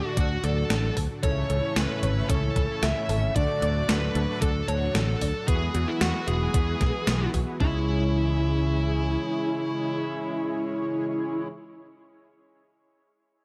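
Nocturnal and nostalgic, this synthwave excerpt moves at 113 BPM in a straight 4/4, centred on C# phrygian and drifting through D, A and Eadd9 before settling on C#m at 7.6 seconds. A dark, distorted electric lead guitar carries the bluesy melody up front, its overdrive trailed by delay, while a silky, detuned sawtooth string pad sits in the background with ensemble chorus, vibrato and a pumping sidechain feel. Bold, fat synth brass with a sub octave and filter sweep adds mellow stabs, and a round, very quiet analog pluck spins arpeggios from 0.2 seconds. A bright, growly picked electric bass anchors the low end alongside a thumpy, tape-tinged electronic kick and an 80s drum machine whose hi-hat and snare carry gated reverb. The drums and pluck drop away before the bass stops at 9.2 seconds, leaving guitar, pad and brass to close the excerpt under a light reverb.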